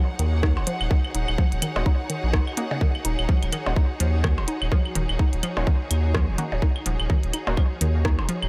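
Cool and hypnotic, this short cut from a longer minimal techno piece moves at 126 BPM in 4/4 with a 58% swing on the sixteenths, sitting on a single Ebm7 chord in Eb minor. An overdriven, tight electronic kick sits up front alongside a deep, thick sine sub bass that is saturated and sidechain pumped, while a clicky hi-hat and rim click kit, overdriven and fed through analog delay, ticks beside tape-toned blips and claves trailing dub echo. The main riff is a hollow, bouncy square-wave pluck, detuned with a moving notch, chorus, vintage 12-bit sampler grit, dub echo and sidechain pumping. Above it, a lush studio string section with smooth vibrato pumps from the start, and a very quiet swarming, granular sine drone holds Gb4. A muted, mellow sawtooth dub chord stab slips in at 1.8 seconds and stops at 7.5 seconds, and the whole mix stays dry on reverb yet heavy with echo.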